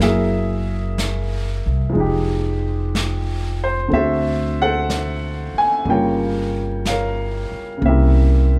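A clear, up-front upright piano carries the accompaniment in this melancholic, smoky jazz ballad fragment, moving through rich chords such as Gb9, Fm9 and C7b9 with a gentle swing. A plucked upright bass with a woody, thumpy tone sits just as close, while a vintage kit played with brushes adds a dark, smooth wash of snare and hi-hat further back. Light reverb gives the playing a soft studio-room glow.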